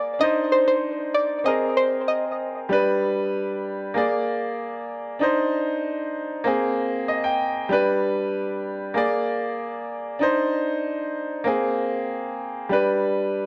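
Bathed in moderate spring reverb and heavy echo, this short dancehall excerpt feels sultry and hypnotic, with a straight, steady pulse in four. A clear concert grand piano carries the accompaniment from start to finish, sitting up front with an open tone and a deep low end as it cycles through Cmadd9, Abadd9, G and Bb7. A soft, round pluck sings the melody only at the opening, from 0.2 to 2.5 seconds, its dark, full-bodied voice shaped by a quick attack, a decaying tail, ring modulation, a filter sweep, chorus and analog delay. Once the pluck falls away, the piano holds the harmony alone, adding a brief fill at 6.8 seconds.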